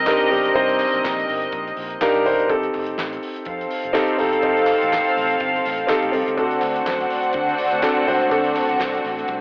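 A dark, reedy string section sits up front with light vibrato and a gut-string tone, carrying the second line over a warm, intimate grand piano whose audible action noise comes through as it plays accompaniment and adds a fill at 1.8 seconds. This glamorous, danceable disco excerpt moves at 124 BPM with a swung sixteenth feel over Cm7, F7 and D7, driven by a dry, damped 70s kit with a fat snare and punchy kick, a round, amped fingered electric bass, and very quiet, hollow group handclaps. At 6.4 seconds a clear, lush string section enters in the background with sustained chords, while the whole has a lo-fi home-cassette, telephone-like character with a light small-room reverb.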